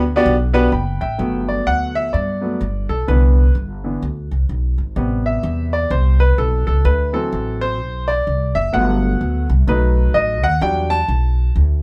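A clear, natural grand piano leads this soulful, jubilant slice of uptempo gospel, taking a solo from 1.2 s onward after a brief opening passage. The tune moves at 128 BPM in 4/4 with a swung eighth-note feel, set in G major and tuned to A4 = 439 Hz. Beneath it, an upright bass with steel strings is plucked pizzicato, woody, dark and growly, holding a low register and staying up front in the mix alongside the piano. The harmony travels from Gmaj7 through Cmaj7, Am7 and D7, then back to Gmaj7 before moving on to B7 and Em7. The two players sound as if they are performing live together in one room, with a light reverb, and the piano drops out at 11.5 s while the bass carries on to 11.8 s in this section cut from a longer piece.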